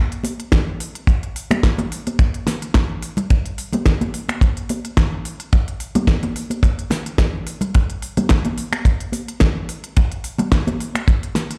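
This groovy, sunny nu-disco fragment, cut from a longer piece, opens with a pop drum kit of finger snaps, hi-hat and snare at 0.1 s, moving at 108 BPM in 4/4 with a light swing on the sixteenths. The kit sounds electronic and layered, with a fat snare, crisp hats and a tape-warm sheen, sitting up front in studio reverb. Congas join at 0.2 s, bright and high-tuned with a thin, damped skin and soft hands, heard close and dry. A tight, mid-forward acoustic kick arrives at 0.5 s, dry and up front and the loudest part of the mix, also carrying studio reverb. The whole rhythm section stays on one percussion-only groove throughout, and the sound carries a light small-room ambience, as if played on a big sound system in a bare room with large studio reverb.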